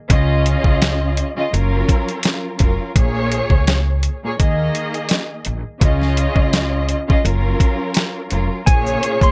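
A gritty, pitched-down boom-bap drum kit with a thumpy kick sits up front in this tough, moody hip-hop excerpt at 84 BPM in Bb minor, as warm bowed strings with expressive vibrato and portamento and a woody, growly pizzicato upright bass move through Dbadd9, Gbmaj7 and Bbm7 chords, before a dark clean electric guitar, a hollow, airy chorus-touched pad and a grainy, bright tube shaker arrive at 8.7 seconds.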